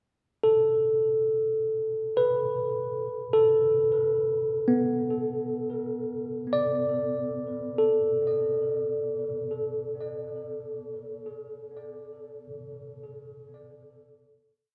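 In free time, this short, reflective ambient piece features a solo tine electric piano, clean and up front through a combo amp with tape echo, that enters at 0.4 s and spins three slow loops of unequal length drifting against each other between B3 and D5 over Asus2 and then Bm before settling on a final note from 7.8 s, all set in a spacious concert hall reverb with a dark production and tuned to A4 = 441 Hz.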